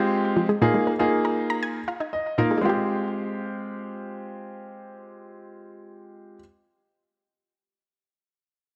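A clear, intimate grand piano with audible action noise sits up front playing accompaniment while a round, detuned, wave-folded analog pluck with chorus and delay spins arpeggios alongside it in this bittersweet yet energetic pop excerpt at 119 BPM in F minor, where a piano fill arrives at 1.9 seconds and the chords move between Fmadd9 and Bb7sus4 inside a lush hall reverb.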